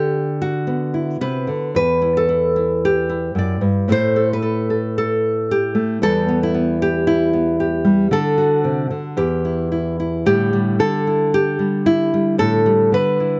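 Reflective and melancholic, this short folk excerpt features a solo nylon-string guitar, fingerpicked in a classical manner, moving at 113 BPM in 4/4 with a rubato feel and tuned to A4 = 442 Hz. The bright, up-front guitar spans E2 to D5, wandering from Bm/D through Em, A5 and D7 to a chordless moment at 9.2 seconds before a new section opens on A7sus4 at 10.3 seconds. Close, detailed microphones and light reverb capture every nuance of the playing.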